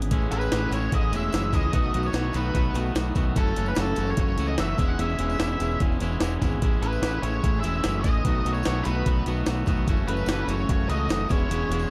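A mellow, lush-chorused electric guitar and a bright, twangy, picked guitar open this upbeat, carefree indie rock excerpt at 148 BPM, over a punchy, overdriven, up-front fingered bass and a gritty, compressed, pitched-up jungle sampler-style kit with a thumpy kick and a medium-tuned snare, re-recorded in a large room. A very quiet, jingly tambourine joins at 0.1 seconds, and at 0.3 seconds a dark octave-fuzz lead guitar carries the melody over a repeating cycle of Amaj7, B7, F#m7 and E6 in A lydian. Light reverb and a dark, warm production frame the whole passage.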